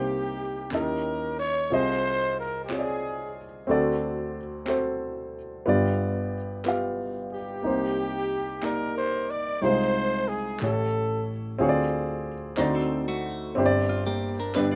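Slow gospel in 6/8, fervent and soulful, where a mellow, intimate baby grand piano with audible action noise carries the accompaniment throughout, a growling, raspy trumpet with scooped notes and a bright saxophone section touched with tape echo share the melody, crisp group handclaps join at 0.7 seconds, and a clean, compressed electric guitar through a phaser adds a second line from 12.6 seconds, heard in a rough home-demo mix with light reverb.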